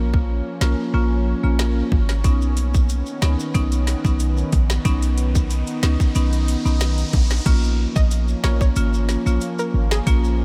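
Dancehall at 92 BPM in Bb phrygian, hypnotic and bouncy, with a tight, overdriven electronic drum kit and a deep, boomy 808-style bass up front under bright, dry hard-mallet marimba and a thick, detuned unison pad that pumps with sidechain compression and chorus. Maracas and timbales join in the background at 2.2 seconds as the harmony moves from Bbm to Badd9, and a background riser runs from 4.7 to 7.5 seconds to carry the cut back to Bbm. At 8.0 seconds a round, detuned sawtooth pluck with a filter sweep adds a short melody soaked in chorus and diffuse ambient delay, all set in light digital ambience.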